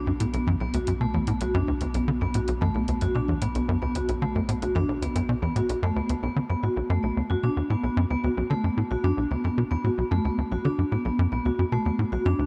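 Ambient, sequencer-driven space music with a cosmic, mysterious mood, cut from a longer piece, in which a punchy, wave-folded sequencer bass riff with a filter pluck and analog delay drives up front beneath ringing, metallic vibraphone arpeggios with fast motor vibrato and their own analog delay, while a round, deep sine sub bass sits in the background and a dry analog drum machine adds hi-hat and toms until both stop at 6.2 s, as the harmony moves from Bm to Bm7 in a light reverb.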